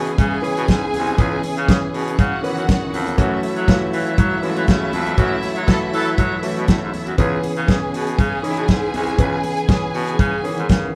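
A straight 4/4 disco groove at 120 BPM drives this glamorous, danceable cut from a longer piece in C# minor. A dry, dark soul drum kit sits up front with a tight kick and a medium-tuned snare, while high-tuned congas played with hard hands add a bright, thin-skinned edge in the background. The bass line comes from a breathy baritone saxophone with a soft attack, vibrato and an intimate, whispered vintage quality. A brilliant concert grand piano with deep bass supplies the accompaniment, a string section plays an expressive second line with portamento, and a lightly overdriven tonewheel organ holds sustained chords through a slow rotary speaker, its key click audible. The harmony moves from C#m7 to F#m7 at 3.2 seconds and back at 7.2 seconds, and during a band accent a distant, roomy horn section delivers a brief stab at 5.7 seconds with slapback echo, all heard as a band playing live together in a moderate studio room.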